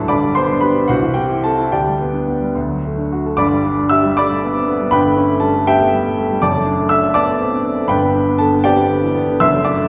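A smooth, vintage-toned grand piano sits up front from the first second, playing alone in a romantic classical character piece with a hopeful, warm mood and a 6/8 feel shaped by free rubato. After an opening phrase moving from G through Am/C and G/D to D, a new passage begins at 3.4 seconds, passing through A7/G and D7/F# before settling back on G. A wet recital-hall reverb surrounds the piano, and the short passage is cut from a longer piece.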